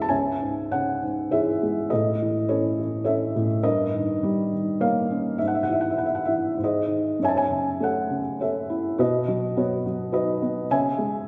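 A felt-muted upright piano carries this cool, moody classical fragment alone, its tone soft, dark and intimate, with a boxy character that sits up front. The lyrical solo moves in a rubato 3/4 around 102 BPM in C# minor, ranging from C#2 up to A5. The harmony travels from C#m through A, D#7/G and Eadd9/G#, touches G# at 6.6 seconds, then passes through F#m7 and B before settling back on C#m at 10.7 seconds. A generous concert hall reverb with a 1.9-second decay surrounds the instrument, lending a sense of listening from further back in the room. Cut from a longer piece, the passage runs for just over 11 seconds as a single section.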